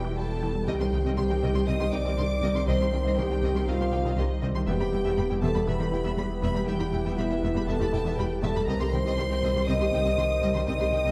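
Opening on a brooding, futuristic blend of hybrid orchestral and electronic film scoring, lush vibrato violins carry a melody and a second line over background violas, a distant cello section, very quiet double basses and a round sine sub bass, while a warbling, moody ambient pad with chorus, a very quiet, squelchy pluck playing arpeggios and very quiet, clear trombone chords sit beneath soft-attack French horns that join at 0.2 seconds, the harmony moving between E minor and C minor in a wet recital hall.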